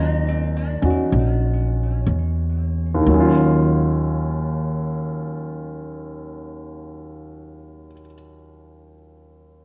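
A moderate echo-chamber reverb and small-room ambience frame this smoky, intimate fragment of a swung jazz ballad in Eb minor at 59-67 BPM, which opens on an Ebm9 chord and slows down at the start, as a dark, clean, hollow-body electric archtop guitar with tape echo carries the melody on Eb4 until 2.0 seconds, a woody, thumpy pizzicato upright bass sits up front until 7.9 seconds, and a warm grand piano plays the accompaniment through to 9.6 seconds.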